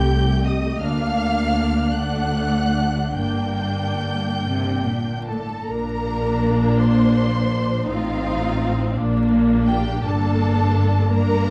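Classical slow romantic movement for string orchestra in a rubato 6/8, yearning and solemn, with a lush violin section singing the high melody over a second violin line, up-front focused violas, rich cellos and woody double basses, all bowed with vibrato in a dark, warm recital-hall sound touched by vinyl crackle, turning from its opening minor harmony toward a brighter major passage at 5.7 seconds in this fragment of a longer piece.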